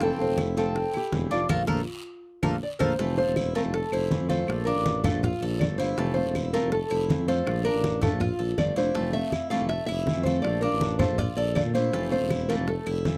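Relaxed and danceable, this short excerpt from a longer Cuban son and guajira piece moves at 161 BPM in a straight 4/4, sitting in F major as it sways between Fmaj7 and Bbmaj7. A fingerpicked nylon-string guitar with old strings carries the melody up front, its tone small and woody, while a second, brighter nylon-string guitar fingerpicks a classical-style accompaniment with audible finger squeak. The Cuban tres adds picked arpeggios from its double strings, giving a metallic sparkle with some octave-doubled strings. Underneath, a tuba takes the bass role up front, punchy with a smooth top and a light vibrato. Percussion comes from low-tuned congas struck with hard hands, tight high-tuned bongos and woody claves set back in the mix, and a raspy guiro in a live room. A band accent runs from 1.5 to 3.0 seconds, with a drum fill entering at 2.2 seconds and closing it out, leading into the second section, all captured as a dry, close 1970s-style studio recording with light reverb.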